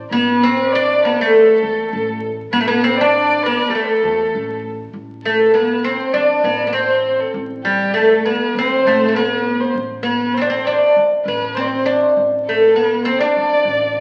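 A pizzicato upright bass with steel strings sounds first, at 0.0 seconds, setting a low, melancholic footing for this Arabic piece in straight 4/4, cut from a longer work. At 0.1 seconds a bright, fretless oud enters up front, its plectrum-plucked double strings carrying the longing melody with a woody bite. Behind it a single bowed violin adds a dark second line with vibrato, while a chamber violin section plays sul tasto with light vibrato, its smooth, intimate top staying in the background until it stops at 4.6 seconds. Shortly after, at 4.9 seconds, the music moves into a new section led by the oud, violin and bass. Everything sits in a wet, large studio reverb and comes through like a very old 78 rpm record, with vinyl crackle over the sound.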